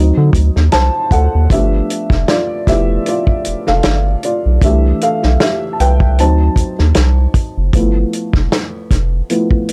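A lightly swung sixteenth-note groove in 4/4 carries this brief R&B and neo-soul excerpt, its mood soulful and warm. The upright piano takes the solo across the whole clip, a dark, woody instrument with a worn, slightly detuned character and audible action noise that make it feel intimate. Beneath it, a round analog bass sits deep and nasal, its sustained tones colored by transformer saturation, and it drops out at 9.2 seconds. A soul drum kit of kick, snare and hi-hat enters at 0.3 seconds, captured in a tight booth, mid-forward, with a rolled-off top and a medium-tuned snare. The harmony moves from D7b9 to G13 and C6 before circling back through D7b9 and G13, and the dry, gritty recording keeps all three parts up front.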